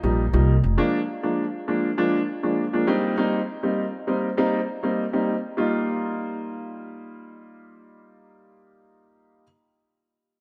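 A grand piano, warm and up front, carries this breezy, joyful afrobeats excerpt in a straight four, its mid-register chords coated in a lush chorus. An acoustic upright bass opens alongside it, woody and thumpy with gut-string pizzicato, then drops out at 0.8 s, leaving the piano on its own. The harmony moves from Ebadd9 to Bb7 and on to Cm7, and at 5.6 s a new section begins, returning to Ebadd9. A plate reverb with a 3.2-second decay soaks the mix, giving it a dreamy, floating atmosphere that lingers until the piano stops at 9.4 s.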